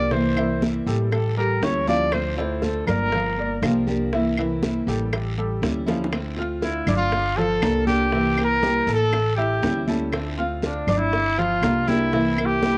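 Latin Cuban son and guajira in D minor at 120 BPM, danceable and nostalgic, with a punchy, vibrato-laden trumpet leading up front through cassette tape and plate reverb, pausing from 3.6 to 6.6 seconds. Beneath it, a bright fingerpicked nylon-string guitar with a tape tint keeps the accompaniment moving, a clear but worn baby grand piano spins arpeggios through tape and plate reverb, and a growly pizzicato upright bass thumps out the low end. Tight bongos and thin-skinned, high-tuned congas sit in the background, joined by woody, close claves and a raspy guiro, all inside a small, damp-sounding booth on a homemade cassette recording, cut from a longer piece.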